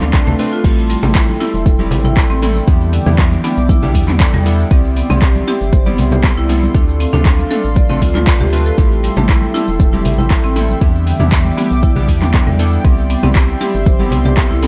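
The electronic kick drum stands out most, a deep, up-front pulse driving this afro house excerpt at 118 BPM in 4/4 with a straight feel, in A minor, cycling through Dm7, Am7, Em7 and Cmaj7 with a warm, hypnotic mood. Around it, a layered, overdriven deep house kit with metallic hats, handclaps, shaker, toms and crash combines with bright, compressed congas played with soft hands that sit in the background. A woody marimba with rosewood bars spins arpeggios through delay, while a round sine sub bass holds the low end with a fast attack and sustained notes. Detuned analog keys with a wave-folded edge and a filter sweep add decaying stabs through chorus and delay, set back in the mix. A mellow sawtooth pad with a sub octave and slow attack sustains chords high above, the pad, keys, marimba and bass all pumping under sidechain, and a very quiet electronic swell opens the first 0.6 seconds, all set in a digital ambience.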